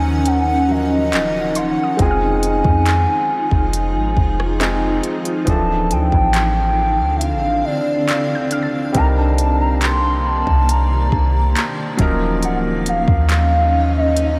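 A straight, unhurried 4/4 groove from a smooth R&B kit with a soft kick, hi-hat, rim click and handclaps, entering at 0.3 s, anchors this late-night, longing contemporary R&B passage, cut from a longer piece, where a deep, boomy 808-style bass sits up front beneath a felt-muted upright piano with audible action noise, a cloudy, evolving granular pad bathed in lush chorus, a gliding, vibrato-laced lead melody colored by chorus and tape echo, and a very quiet, round pluck heard from 1.6 to 9.8 s, all within a dreamy mix soaked in cathedral reverb.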